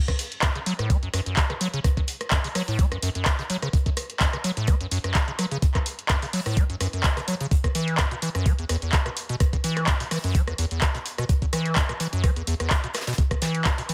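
Trippy and driving, this acid house cut moves at 127 BPM in 4/4 with a light 16th-note swing, sitting in F# minor pentatonic and tuned a touch below standard pitch. A squelchy, resonant square-wave acid bass carries the riff up front from E2 to A3, its filter sweep and fast, decaying attack colored by analog chorus. A thumpy, sampler-style electronic kick with a tape-warm edge anchors the groove alongside a punchy analog drum machine supplying handclaps, hi-hat and rim click, its sound re-recorded in a large room. Tucked in the background, a soft brush kit adds hi-hat and a fat snare from a small room, the hats pumping with sidechain and both hats and snare thinned by high-pass filtering. The mix stays dry and close, with all four parts running together from the start to about 13.9 seconds as one continuous section cut from a longer piece.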